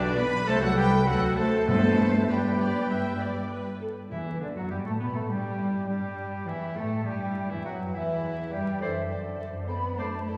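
A church's wet, lingering reverb surrounds this spirited excerpt from a quick classical-period movement in G major at 102 BPM, with vinyl crackle under the sound. A rich, smoothly bowed violin section carries the melody over second lines from a clear oboe, a pure, vibrato-laden flute section and a quieter violin section in the background, while a very quiet, intense viola section accompanies and a focused double bass section anchors the bass beside a distant, expressive cello section. A mellow, roomy French horn section holds soft sustained chords, hard-mallet timpani strike articulate notes from 1.7 to 5.0 seconds, and a distant clarinet joins with its own line at 4.1 seconds.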